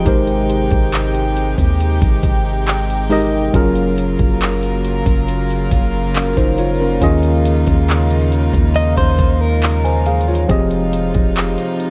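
A slow, straight 4/4 pulse at 69 BPM from an up-front electronic R&B kit with a knocking kick, metallic hi-hats and handclaps anchors this late-night, longing contemporary R&B piece, as a deep, sine-like 808 bass sustains beneath a mellow, slightly out-of-tune tine electric piano and earthy bowed studio strings moving through Abmaj7, Gbmaj7, Eb9sus4 and Fm9, while a clean, compressed direct guitar picks brief arpeggios through digital delay from 8.8 to 10.5 seconds, the dry recording steeped in worn cassette-tape warble.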